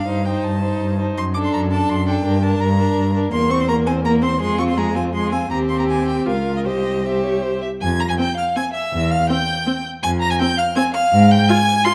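A dramatic, urgent classical-period string quartet movement in quick 3/4 at 164 BPM, cut from a longer piece, opens in G minor and turns to F minor at 3.3 s, with a bright, close first violin singing the high melody, a rich second violin shaping the inner line, a clear viola supplying accompaniment and an up-front cello anchoring the bass, each played bowed with vibrato and a focused tone inside a moderate recital-hall reverb and a dark overall production.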